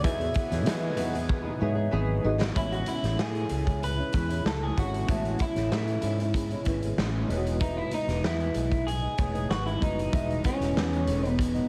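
Heavily compressed with a radio-like sheen and light reverb, this dreamy, nostalgic indie and bedroom-pop excerpt at 95 BPM sets a slightly broken-up, lo-fi electric guitar melody bathed in lush chorus and tape echo over a mellow, ringing soft-mallet vibraphone second line, a dark fingerpicked nylon-string guitar with audible finger squeak, a worn, slightly out-of-tune reed electric piano with fast tremolo, a punchy fingered electric bass and an up-front raw garage drum kit whose fill at 1.3 s carries the music from Emaj9 to Amaj7, while a thick, airy detuned pad sustains chords only until 2.5 s.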